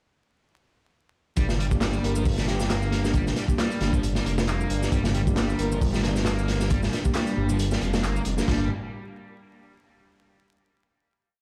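A swaggering, raw breakbeat track in G minor at 135 BPM, with a 56% swing on the sixteenths giving the groove a loose, rolling push. The drop arrives at 1.4 seconds as a crunchy, saturated acoustic break of kick, snare, hi-hat and splash cymbal hits up front, looped with edits and rolled off at the top. A tape-warm machine layer of shaker and handclaps sits behind it, and quiet, bright congas and bongos join at 5.1 seconds. A thick, menacing detuned saw bass with tube saturation holds long gliding notes up front in the mix. A bright, double-tracked distorted guitar repeats a 16-step picked riff through dub echo, while a mellow tine electric piano drops syncopated chord stabs in one parallel shape. A moody analog pad breathes with sidechain pumping under a breathy, flute-like lead that adds short answering phrases with vibrato and an old-record tint, all heard as if on a big sound system in a bare room with vinyl crackle, before a final chord closes the piece from 8.5 seconds.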